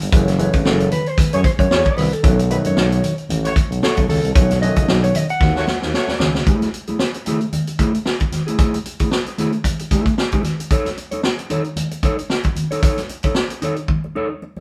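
Cool and hypnotic, this funk excerpt moves at 113 BPM with a swung sixteenth feel, its harmony shifting from F#m9 and B9 to Eadd11/A and A as a band plays live in one room with moderate studio reverb. A clear, close-miked tuba with light vibrato carries the bass until 6.4 seconds, alongside an up-front vintage drum kit with a punchy kick, stringy overdriven clav stabs in the background, soft-handed high-tuned congas, a dark fingered electric guitar accompaniment, and a distant, roomy horn section playing a second line from 1.3 seconds. A clean electric guitar solo threads through the opening section, and drum fills mark the move into the second section and the closing moments.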